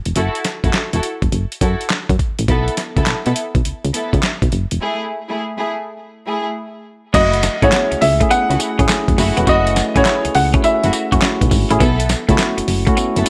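Set in a light reverb, the recording puts a gritty, compressed sampler-style drum kit and a punchy, round FM bass up front. This is a bouncy, confident new jack swing R&B passage with a swung sixteenth-note feel, cut from a longer piece. A thumpy kick, medium-tuned snare, hi-hat, handclaps, tambourine and crash cymbal carry the groove, while a lush, bowed string section plays soft-attack stabs with vibrato through a low-pass filter. A break arrives at 4.8 seconds. At 7.1 seconds the second section opens, with a baby grand piano taking the melody through a delay and a clean, picked electric guitar playing a chorus-treated riff in the background. A tine electric piano joins with direct accompaniment from 7.6 seconds.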